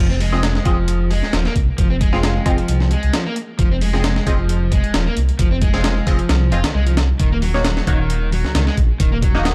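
A crunchy overdriven electric guitar riff with 12-bit sampler grit and tape echo opens alongside a deep, rumbling detuned saw bass, joined at 0.2 seconds by a compressed, pitched-up breakbeat kit with a thumpy kick and high-tuned snare, and at 0.3 seconds by nasal band-passed chord stabs treated with phaser, analog chorus and tape echo, forming a gritty, raw breakbeat groove at 133 BPM in F phrygian that moves from Fm7 to Ebm7 at 7.2 seconds, cut from a longer piece with a dark production.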